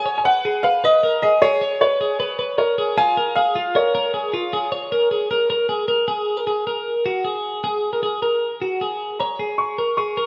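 A clear, woody upright piano carries the melody over a twelve-string electric guitar's arpeggios from the opening moment of this breezy indie pop passage, cut from a longer piece in a straight 4/4 feel. The piano sits up front with a slightly detuned, present tone and long sustain, its line staying in a high register. The guitar is also up front, bright, clean, picked and twangy, with a compressed edge colored by spring reverb and analog delay. The piano drops out at 5.7 seconds, leaving the guitar to carry the harmony alone as it moves from A#m7 toward F#add9, and the piano returns at 9.2 seconds over a rootless F#add9. A lush hall reverb surrounds the pair, and the rough home-demo mix gives the track an unpolished, intimate character.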